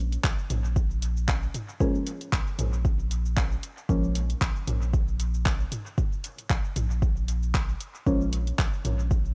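A swung 4/4 groove of an overdriven electronic kick up front and a layered, overdriven deep house kit of cabasa, handclaps and hi-hat, both with a small-room character and the kit trailed by dub echo, drives this nocturnal, hazy dub techno fragment, with tape-warm electronic toms pumping in the background. A round, sine-like sub bass sits up front and pulses with sidechain pumping throughout. A soft, dark chord stab, colored by chorus, phaser, a filter sweep and dub echo, decays from 1.8 to 4.1 seconds and returns briefly at 8.1 seconds in an otherwise dry mix.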